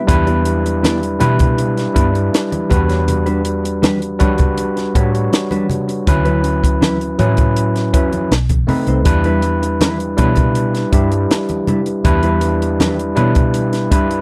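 A barky, gritty overdriven tine electric piano sits up front in this smooth, silky stretch of lush 1970s-style soul, joined by a dark, compressed electric guitar riff in the background, a round, foam-muted vintage fingered bass, a compact cocktail drum kit with a high-tuned snare and punchy kick, and very quiet, low-tuned congas, heard in a dry, close 1970s-style studio recording.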